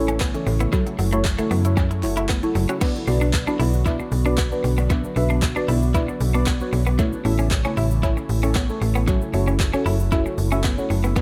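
Energetic yet bittersweet, this dance-pop excerpt rides a straight feel, with a deep house drum kit up front built on a deep kick, woody snare, smooth hats, handclaps, shaker and crash, its sound touched by dub echo. A slap-like FM bass, snappy with a metallic attack and also up front, pumps with sidechain compression, while deep, mellow chord stabs, soft and dark through chorus, phaser and dub echo, carry the harmony from A to F#m7, then settle on Bm at 2.8 seconds before returning to A and F#m7. Behind them a glassy FM pad sustains ethereal chords in the background, treated with ensemble chorus and its own reverb, and an electric guitar at the edge of break-up plays a compressed, picked riff coloured by analog chorus. A very quiet, woody mallet-like synth pluck traces arpeggios only until 2.8 seconds, and a crisp, close group handclap sits barely audible in the mix. The overall sound is echo-heavy with light reverb, giving the groove a spacious, pulsing sheen.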